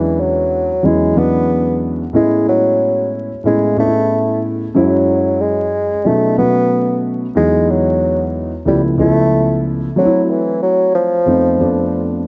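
A hip hop groove at 92 BPM in 4/4 swings its sixteenths at 57%, setting a nocturnal, cool mood in this short cut from a longer piece. A dark concert grand piano carries the accompaniment from 0.0 to 12.3 s, its deep bass and slightly boxy tone sitting up front as it moves through jazzy harmony from E13 and Amaj7 to B7, Emaj9, C#7alt and a closing F7#11. Above it, a mellow bassoon plays the solo melody in a classical style between E3 and B3, touched with light vibrato and an analog delay, and also placed up front until 12.2 s. A moderate echo chamber reverb with a 2.1-second tail gives the room a soft halo. The production leans shadowy and warm, with vinyl crackle adding a worn, late-night patina.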